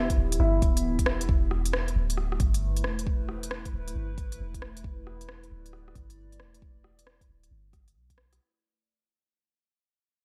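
Bathed in light digital ambience and fading out throughout, this ghostly, rainy future garage excerpt with a swung 16th-note feel opens on a thick-felt, muted upright piano drifting through lush chorus and diffuse delay until 1.3 s, while a warbling, nostalgic, lo-fi pad with chorus and phaser sustains chords from Em7 to Am, a round, dark 808-style bass sits up front with sidechain pumping, and an electronic kit of smooth hats and rim clicks rides over a deep, layered kick.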